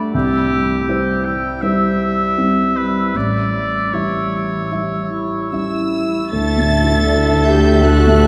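A spacious cathedral reverb surrounds this tender, moving cinematic piece, cut from a longer work and played with a free, rubato feel. An intimate, up-front grand piano with audible action noise carries the accompaniment from the start, joined by a bright, present oboe, a distant, roomy clarinet and a pure, hollow flute in the background as second lines over chords moving from C to A7. At 5.5 s a lush, expressive violin section takes the melody over soft-edged French horn chords, and at 6.3 s, as the harmony settles on Dsus2, a background violin section, a focused cello section and a dark double bass section with portamento enter, with a smooth viola section added at 7.8 s.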